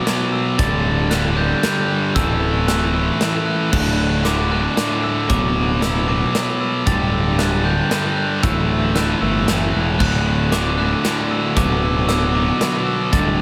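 Ringing, bell-like glockenspiel arpeggios with analog delay open this hopeful, soaring post-rock excerpt in D major at 115 BPM in 3/4, together with a tight, up-front distorted guitar riff and a dark fuzz guitar set in the background; a big rock drum kit with bright cymbals and a punchy kick in a pumping room joins them, a growly, overdriven picked bass enters at 0.6 s, and a very quiet, deep, moody ambient pad of evolving sustained chords arrives at 11.2 s, all within light studio reverb.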